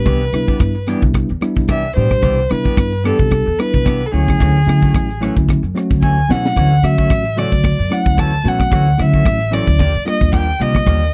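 A clear, smoothly bowed violin played by a single player carries the melody from the very start, its light vibrato touched with a slapback echo, while a tine electric piano heard through its built-in speakers lays down warm, clean accompaniment beneath it. Almost at once a woody pizzicato upright bass with steel strings and a crisp, polished fusion drum kit join in, the kit sitting up front with a punchy kick, a high-tuned snare, hi-hat and rim clicks in an airy studio room. A bright, picked electric guitar adds clean stabs from the background, shimmering faintly with subtle chorus. The swung sixteenth-note feel gives this soaring, slick slice of electric jazz fusion an easy lilt as the harmony moves from Cmaj9 to Dmaj9 at 4.1 seconds and on to Ebmaj9 at 9.8 seconds, with a drum fill breaking in around 6.0 seconds. The sound is dry and close, in the manner of a 1970s studio session, and the passage is cut from a longer piece.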